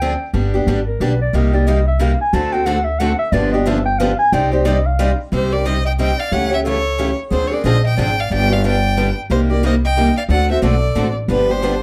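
A mellow clarinet with subtone and scooped notes opens with a solo over a boxy, finger-squeaking parlour guitar, a second bright guitar in the background from 1.3 s and a thumpy, woody upright bass, before a clear, focused violin with vibrato and plate reverb takes the melody at 5.3 s in this fiery, swinging fragment of acoustic string swing in 3/4, set in a small room.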